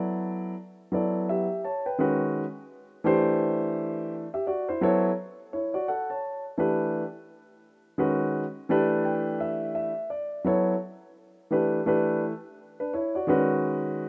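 A solo concert grand piano with a deep bass and natural, up-front tone carries this mellow, smoky hip hop fragment at 85 BPM with a 62% swing on the sixteenths, moving through suspended ninth chords and minor sevenths, with a piano fill from 8.3 to 10.5 seconds leading into a Bm11, all set in light studio reverb within a rough home demo mix cut from a longer piece.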